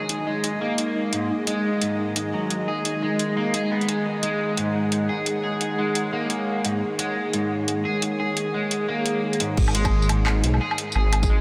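Soaked in a huge, dreamy ambient reverb, this tense, cinematic half-time drum and bass excerpt opens with a string-like bowed drone holding sustained chords under twangy, slightly broken-up electric guitar arpeggios. A bright, pulsing gated texture sits in the background while a layered electronic kit with metallic hats, handclaps, tambourine, woodblock and crash keeps a swung half-time feel. At the drop at 9.6 seconds, a dark, rumbling detuned saw bass arrives up front alongside a tight, tape-warm electronic kick.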